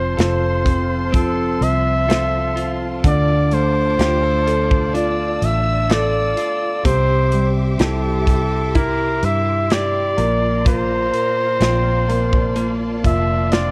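A straight, unhurried 4/4 pulse at 63 BPM carries this heartfelt, tender pop ballad in F major, with a polished, airy acoustic drum kit entering at 0.2 s, its punchy kick and medium-tuned snare sitting up front alongside the hi-hat. A round, foam-muted fingered electric bass, dark and amped, anchors the low end, while a mellow baby grand piano with long sustain plays the accompaniment beneath. A clear flugelhorn takes the solo melody in pop style, singing with vibrato at the front of the mix, and a lush bowed string section holds sustained chords with expressive vibrato and a smooth top. Tucked in the background, a compressed, clean electric guitar recorded direct picks out arpeggios. The harmony moves from F to Dm, then Cadd9 and Bbadd9, and the whole recording sits in a small room, colored by the worn, warbling pitch drift of old cassette tape, across this 13.7-second excerpt cut from a longer piece.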